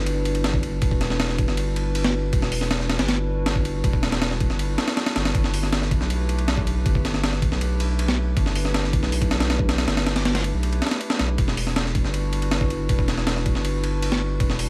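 Dark and atmospheric, this drum and bass excerpt with a jungle edge moves at 159 BPM in E minor, its warbling, lo-fi pad holding sustained chords that shift from Em7 to G6 at 5.3 seconds and back at 11.4, softened by chorus, built-in reverb and vintage 12-bit sampler grit. Underneath, a deep, saturated sine sub bass sits up front, while a compressed, gritty breakbeat kit entering at 0.1 seconds drives hi-hat, ride, a thumpy kick and a high-tuned snare through studio reverb. Vinyl crackle runs across the dry mix, lending a nostalgic dust to the whole.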